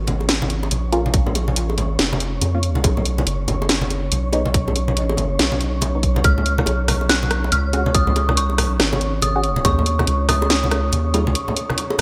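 A 1980s-style digital production with a moderate plate reverb frames this meditative, dark deep dubstep fragment, cut from a longer piece and moving with a swung, half-time feel. A round, soft sub bass and a garage kit with cracking snare, bright hats and gated reverb sit up front, joined by hard-handed acoustic congas and bongos in dub echo, a breathy, wind-like noise texture, and a muted, nasal chord stab with phaser in the background, while a tight electronic kick arrives at 1.1 s. An eerie, inharmonic FM bell enters at 6.2 s with chorus and dub echo, and the sub bass drops out at 11.4 s for a brief break.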